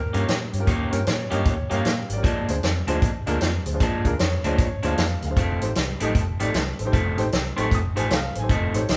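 Electric blues shuffle at 154 BPM with a gritty, swaggering swing, moving through Eb7, Bb7 and F7 in a nine-second cut from a longer piece. A twangy, slightly broken-up electric guitar through a small old amp plays the riff, while a dark, round, foam-muted fingered electric bass holds the low end and a woody, polished upright piano fills in the accompaniment. The vintage drum kit sits up front with a punchy kick, medium-tuned snare and hi-hat, its top rolled off, and the band plays live together in a stone room with moderate reverb.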